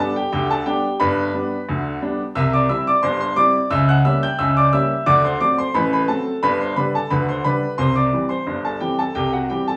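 A woody, vintage upright piano sits up front with long sustain, playing a playful, lively ragtime passage alone in a straight 2/4 feel that moves from G through C and a C#dim7 to D7 and back, set in a small room's ambience with a wet studio reverb, in a short piece cut from a longer performance.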